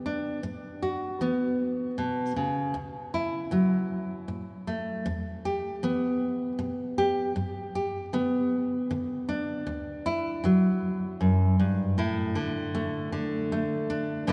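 Bathed in a long, cathedral-like reverb from a church or concert hall, this short cut from a longer folk piece features a solo nylon-string guitar, full-bodied and up front, fingerpicked with audible finger squeak and a deep classical tone. In an unhurried waltz time, it moves through Aadd9, D, Em and G before shifting at 12.0 seconds to a new passage that opens on Asus4, leaving a hopeful, nostalgic mood.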